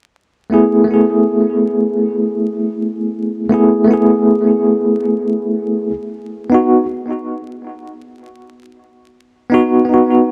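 Cinematic and smoky, this trip hop excerpt drifts at 80 BPM in 4/4 with a gently swung sixteenth-note feel, built around a single tine electric piano. The piano sounds bell-like, bright and clean, sitting direct and up front from 0.5 seconds as it moves from Eadd11/A to B at 5.9 seconds, colored by tremolo, tape echo and a low-pass filter that sweeps across the whole passage. A moderate plate reverb, an echo-heavy mix and a layer of vinyl crackle wrap the sound in a dusky haze.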